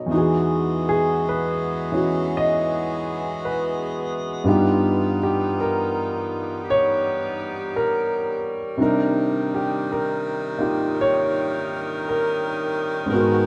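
A warm grand piano opens this tender, intimate jazz ballad excerpt, playing up front with long sustain as a swung accompaniment in 4/4. A bright saxophone section joins at 0.1 seconds, holding sustained chords with light vibrato and a smooth top as the harmony moves from Emaj9 through G7alt to Cm9. A moderate studio reverb lends the slow, unhurried passage a close, gently glowing room sound.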